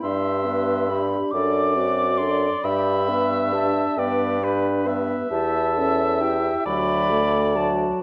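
A slow, solemn wind quintet in 6/8 opens with all five players sounding together at a rubato 45 BPM: a pure, straight-toned concert flute with a crisp attack carries the melancholic melody, while an up-front oboe with vibrato and a smooth top sings a second line above the clarinet's clear accompaniment and a distant, roomy French horn. An up-front bassoon with light vibrato anchors the bass as the harmony moves from G through D7/F# and A7/E to D, with the oboe ending at 7.7 seconds. The short fragment sits in a wet scoring-stage reverb, and worn cassette tape adds a warbling pitch drift throughout.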